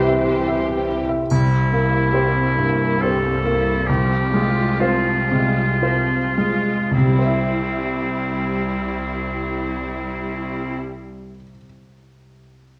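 In a rubato triple metre that slows down over its first seven seconds, this lush, lyrical romantic fragment for piano and orchestra places an intimate, up-front baby grand melody with audible action noise over a brief opening chord of warm and faint violin sections, dark clarinet, pure flutes, bassoon, mellow horns and double basses that stops by about 1 s, while a distant oboe, an intense viola section and rich cellos carry on to 10.8 s, a close, dry triangle enters at 1.3 s, and a recital-hall reverb and worn, warbling cassette-tape pitch drift colour the sound.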